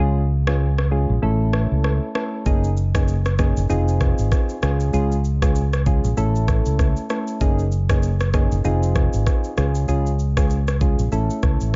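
This joyful, breezy afrobeats excerpt opens with soft, gentle electric-piano-like synth keys and a mellow fretless electric bass, the keys carrying a chorus effect and the dark, round bass an analog chorus, before the afro-pop drum kit enters at 0.5 seconds. It moves at 97 BPM in 4/4 with a swung sixteenth-note feel, centred in Db major and tuned slightly below standard pitch. The electronic, produced drums feature a knocking kick, rim click and shaker, sitting up front with a large-room character. The bass is amped and punchy, riding prominently in the mix. Chords cycle through Db, A, Gb6 and Fm7, with the keys supplying fast-attack, decaying sine- and triangle-like tones. The overall sound is dry and dark-toned, the piece cut from a longer work and ending at 11.8 seconds.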